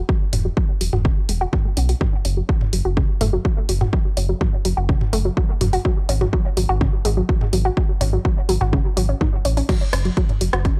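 A dry, gritty hardware sound frames this hypnotic, cinematic melodic techno excerpt in a straight 4/4, where a nasal, wave-folded analog pluck spins chorused, tape-echoed arpeggios under sidechain pumping from the start, a punchy, overdriven electronic kick sits up front from 0.1 seconds, and from 0.3 seconds a deep, round analog bass with tube saturation joins a layered, overdriven house drum kit of crash cymbal, hi-hat, rim click and toms, while the harmony moves from Esus2 through a chordless stretch to G#5 and F#5.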